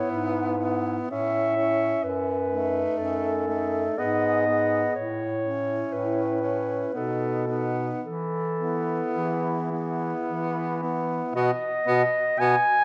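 A short passage of a lyrical classical piece for single-reed quartet opens with clarinet, alto and tenor saxophone sounding together. A dark, smooth-topped clarinet carries the melody up front, and a warm alto saxophone with vibrato shapes a second line beneath it. The clear tenor saxophone, also with vibrato, supplies accompaniment, while a vintage-toned bass clarinet anchors the bass from 0.1 seconds. The tender, serene mood unfolds in a rubato 3/4 at roughly 53-65 BPM in E major, moving through A, G#m and B7 before settling on E at 8.0 seconds. A brief new section begins on B at 11.3 seconds, and the clarinet's line lingers slightly beyond the others, all within the moderate bloom of a scoring stage.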